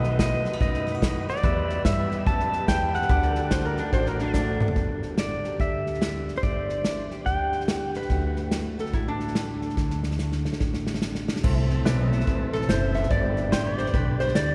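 Drenched in the long, wet reverb of a church or concert hall, this sunny, heartfelt slice of swinging honky-tonk and classic country opens on a twangy, compressed pedal steel melody up front, carried by the woody pizzicato of an upright bass and a tight, dark-cymballed drum kit. Behind them sit a bright, full-bodied dreadnought acoustic guitar with audible finger squeak, a smooth tonewheel organ turning on a slow rotary speaker, and a second, softer pedal steel holding sustained chords with volume swells. A metallic, nasal lap resonator guitar adds a fingerpicked slide line, then takes a solo at 11.4 s after a drum fill, as the harmony moves to Amadd9 and settles on G.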